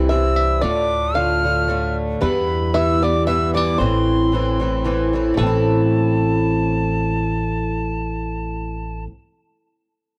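A swung triple-time lilt drives this wild, brief Celtic waltz cut from a longer piece, where a mellow, double-strung Irish bouzouki and a woody, growling pizzicato upright bass sit up front beneath an airy, tongued mid whistle melody with chiff and vibrato, while a bell-like electric piano and a twangy, fingerpicked bluegrass banjo trace a quieter second line in the background, all captured as a dry, close 1970s-style studio recording in a small room.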